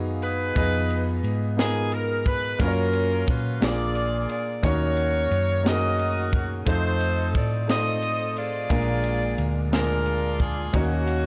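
A dry, gritty cassette-tape recording in a small room captures this solemn, soulful slow gospel fragment in Eb minor, moving in 6/8 at 59 BPM through chords such as Abm7, Gbmaj7, Bb7 and Ebm7. A woody upright piano with long sustain and a round, punchy hollow-body electric bass both begin at 0.0 s, and a crisp fusion drum kit with a high-tuned snare, tight kick and dark ride cymbal joins at 0.2 s. Up front, a bright saxophone section carries the jazz-style melody with vibrato and analog delay.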